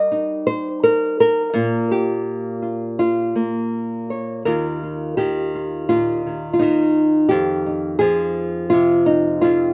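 Folk for solo fingerstyle acoustic guitar, this peaceful fragment of a longer piece moves at a gentle 84 BPM in 4/4, with a loose rubato feel in Eb major and tuning set to A4 = 436 Hz. A single nylon-string guitar carries everything from 0.0 to 9.7 seconds, spanning Eb2 to Eb5 with a warm, thumb-plucked tone that feels small and intimate. It sits up front in the mix, dry and close, captured outdoors so the sound carries little ambience and a softened top end. The harmony opens on Eb/G and shifts to Bb5 at 1.5 seconds. A second passage begins at 4.5 seconds on Ebadd9 before settling onto Fm7 at 7.3 seconds.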